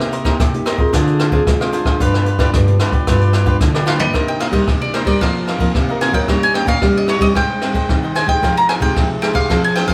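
This samba and choro fragment carries a nostalgic, bittersweet mood in a straight four-beat feel, played by a band together in one room and bathed in a wet, large studio reverb. A jazz brush drum kit sits up front with a boomy kick, a medium-tuned snare, dark cymbals and a rolled-off top, working through hi-hat, ride, rim clicks and toms from the start. Beneath it, a crisp, picked cavaquinho and two fingerpicked nylon-string guitars lay down the harmony and bass line: one guitar has a classical touch, while the other sounds small and sits in the background, with audible finger squeak. At 3.9 seconds a drum fill ushers in a picked bowl-back mandolin, whose warm double strings carry the melody in a high register until the end at 9.9 seconds. The harmony moves through jazzy minor colours such as Cm7, Dm7b5, G7, Abmaj7 and Fm9, which deepen the wistful, acoustic character of the piece.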